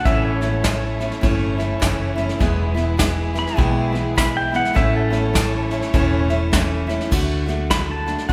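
Down-home and easygoing, this short honky-tonk and classic country excerpt swings at 102 BPM, with a bright, twangy pedal steel guitar soloing throughout over an up-front dreadnought acoustic guitar, a round, foam-muted vintage electric bass, a soft brush drum kit with punchy kick and crash, and a lush bowed violin section in the background that drops out at 7.1 seconds as the chords move through A, E and D, all set in the roomy reverb of a church or concert hall.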